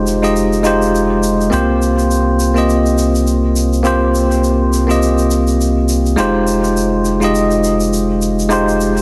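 A relaxed 103 BPM groove in 4/4, lightly swung on the sixteenths, carries this wistful sunset chillout cut in F minor, with a natural acoustic shaker entering at 0.1 s. A bell-like, barky tine electric piano sits up front with tape echo, moving from Fm7 to C7sus4 at 1.5 s and back to Fm7 at 6.2 s over a round, deep analog bass with a dark filter sweep. A lush hall reverb and a heavily compressed, radio-like sound with lossy artefacts colour the short passage.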